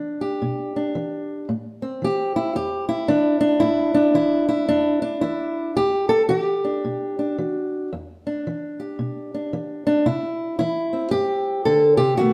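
A reverberant stone room surrounds this short blues fragment with a reverb of about 1.0 s, and the performance has the open feel of musicians playing live together in one space. Alone and up front, a fingerpicked old ladder-braced acoustic guitar carries the whole 12.3 seconds, its tone dark and boxy with the dull bite of aged strings. The mood is brooding and soulful, moving at 112 BPM in 4/4 with a loose swing on the eighth notes. In E minor and tuned slightly sharp to A4 = 443 Hz, the guitar opens on Em7, settles into Am at 1.5 s, returns to Em7, and turns to C near the close. Its woody voice spans from low E2 up to A4, and the fragment is cut from a longer piece.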